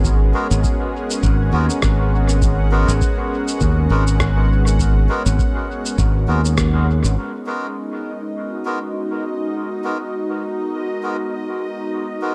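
A warbling, detuned analog pad holds a G#m9 chord under a bubbling, resonant stepped-filter texture as this deep, meditative ambient dub excerpt opens in G# minor at 101 BPM with a swung 16th feel. A growly, up-front fingered electric bass plays from the start alongside a distant, tape-warm electronic kick and a muffled, pitched-down cabasa and rim click trailing dub echo, while a reedy, breathy melodica adds echoing stabs from 0.3 seconds. After a band accent at 6.6 seconds the bass and drums fall away by 7.2 seconds, leaving the chorused pad, bright bubbling texture and melodica to float in an echo-heavy digital ambience.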